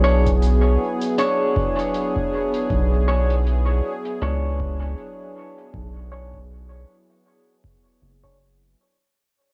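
Deep and hazy, this short ambient dub excerpt moves at 79 BPM in B dorian, with a swung 16th feel, resting on a single Bm69 chord as the whole passage fades out. Up front, a smooth, detuned sawtooth pad holds sustained chords through chorus, tremolo and cassette tape, a round, nasal analog bass sits deep and dark, and a twangy, compressed clean electric guitar plays stabs through a low-pass filter, dub echo and plate reverb. From 0.3 s, an electronic kick with a tape-softened, deep thump and a low-passed, dub-echoed acoustic hi-hat in a pumping room sit in the background under a filter sweep, all with the lo-fi feel of a home cassette recording in light reverb.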